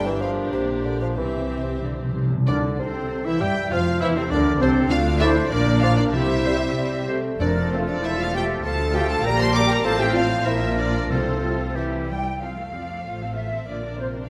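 A cheerful, spirited classical-period orchestral movement in a flexible, rubato 2/4, where lush, vibrato-rich violins carry the melody over a second violin line, rich violas, dark cellos and double basses and a mellow bassoon, while soft-mallet timpani add a round fill at 1.2 seconds and, from 2.5 seconds, an airy flute ensemble, punchy oboe, mellow clarinet and very quiet French horn chords join in, all bathed in the wet reverb of a scoring stage.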